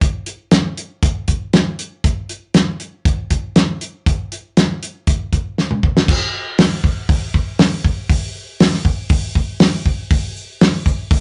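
Rock drum passage cut from a longer piece, nostalgic and jangly in mood, where an up-front, damped 70s acoustic kit with a fat snare, tight kick and rolled-off top plays crash, hi-hat, toms and straight 4/4 time, breaks into a fill at 5.6 seconds that leads into a new section, and is joined at 10.1 seconds by a very quiet, grainy tube shaker, all captured as a rough rehearsal-room recording with a small, wet room reverb and saturated sound.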